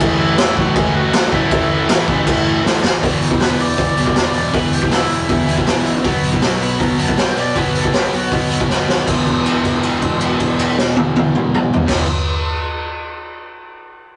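A gritty, up-front garage drum kit with a boomy kick and crash cymbal drives this upbeat, rebellious punk rock excerpt at 158 BPM, with fills marking the changes and a rough rehearsal-room sound warmed by saturation and light reverb. Two bright, distorted electric guitars hammer out riffs in the background throughout, joined briefly by a very quiet, double-tracked crunchy guitar that drops out at 2.8 s, while a growly fuzz bass sits low and very quiet beneath them. A raw overdriven lead guitar carries the melody and breaks into a solo from 3.0 s, and from 9.1 s the song lands on a single held note over the chords.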